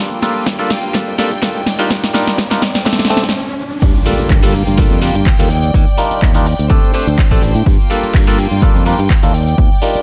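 A nostalgic, sensual slice of filtered disco house in G minor, moving at 125 BPM in 4/4 with a light swing on the sixteenths, cut from a longer piece. A twangy, stringy clav played through a combo amp carries the accompaniment with a phaser, while a clear, earthy violin section holds sustained chords with light vibrato and a gritty 12-bit sampler edge, both pumping under sidechain and a low-pass filter alongside a growly, direct fingered electric bass. The opening build-up runs over Gm7, Ebmaj7 and D7sus4 with a house drum kit fill of snare, handclaps, hi-hat, shaker and crash, while an electronic riser hovers in the background and a punchy, layered kick comes in at 0.5 seconds. After a brief stop, the drop lands at 3.8 seconds with an impact, the kick sitting up front and tape-warm, and a very quiet, close and dry tambourine entering beneath the pumping hats and cymbals. The mix carries light reverb and a digital ambience, with the same chord cycle turning through the drop.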